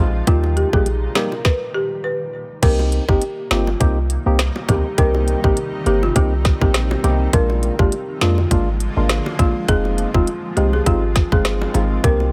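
Bouncy and tough, this dancehall excerpt moves at 102 BPM in 4/4 in C minor, with a light 16th-note swing. Up front, an electronic island pop drum kit pairs a tight kick and woody snare with smooth hats, rim clicks and crash cymbal. A deep, boomy 808-style bass with a clean sine tone sits beside it, while low-tuned bongos with hard hands sit in the background. A hollow, organ-like percussive stab with chorus and a blurred, evolving granular pad, bright with its own reverb, both pump against the sidechain. A rustic folk marimba with medium hard mallets carries the melody through a digital delay. After an opening Eb, the music stops from 1.4 to 2.6 seconds, then settles into a Cm7, Bb7 and Fm7 progression in a dry, close mix.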